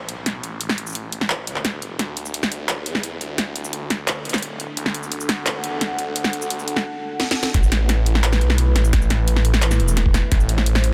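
Heavy and tense, this half-time drum and bass excerpt at 173 BPM opens on a deep, moody analog pad with chorus and sidechain pumping, sweeping through a filter over a swirling, thick phased saw bass while an overdriven, layered electronic kit with cracking snare, bright hats, handclaps and shaker sits up front. A drum fill at 7.2 seconds leads into the drop at 7.5 seconds, where a gritty, thumpy pitched-down kick joins as the chords move from A5 and D to A minor. The dense, heavily limited master carries light reverb.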